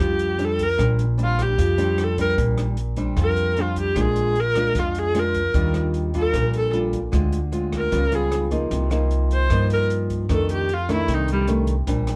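Sunny and romantic, this bossa nova excerpt at 152 BPM in Bb major puts an intense, clear bowed viola up front with vibrato singing the melody over a small, fingerpicked nylon-string guitar and a woody, thumpy pizzicato upright bass on gut strings, while a smooth jazz kit in a small room enters at 0.2 s with hi-hat, rim click and a boomy kick under a rolled-off top, all wrapped in light reverb and a dark production as harmonies move from Bb69 through Ebmaj9 and Db7#11 to F6 and the viola falls away at 11.4 s.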